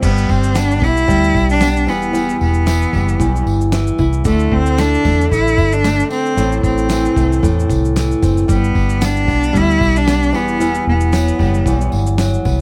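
Acoustic pop with a sunny, easy-going mood, moving at 114 BPM in 4/4 with a light sixteenth-note swing in G major, cut from a longer piece. A clear, focused bowed cello carries the melody up front with vibrato, sitting between A3 and E4 and dropping out at 11.9 seconds while the others carry on to 12.6 seconds. A fingerpicked flamenco guitar on fresh strings accompanies it, also up front, with audible finger squeak. Underneath, a vintage foam-muted fingered electric bass sounds dark, round and punchy, while a sampler-style drum kit adds a gritty, overdriven character with a thumpy kick, fat snare, shaker and crash cymbal. A jingly tambourine sits distant in the background, as if in a large room. The chords move from G through Em and Dsus2 to Am, returning to G and closing on Emadd9, all captured with close, detailed microphones and little reverb.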